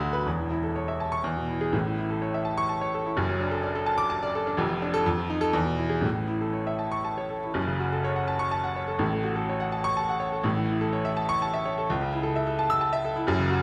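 A moderate recital hall reverb surrounds an up-front, intimate baby grand piano with a bright, natural tone and audible action noise, in this short cut from a longer classical piece. Played solo as a sparkling, brilliant virtuoso study in 3/4 with rubato, it moves at roughly 117-133 BPM across a range from E1 to E6, tuned to A4 = 437 Hz. The opening in A major passes through chords such as D/F#, Dm/F and F7 before turning to F# minor at 7.6 s, with A and A/C# chords following before the close at 13.6 s.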